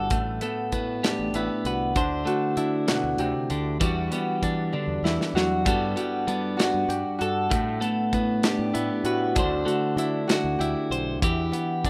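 Math rock and midwest emo in 6/8 at 65 BPM, this intricate, wistful excerpt moves through extended chords like Am9, D9, Em9 and Gmaj9 over about 12 seconds, cut from a longer piece. A bright, clean, compressed twelve-string electric guitar and a ringing, fingerpicked concert harp playing arpeggios sit up front, while a growling fingered bass with overdrive adds punch underneath. A mid-forward studio drum kit with a punchy kick and rolled-off top plays a fill from 4.7 to 5.7 seconds, all within a rough home demo mix with small room ambience.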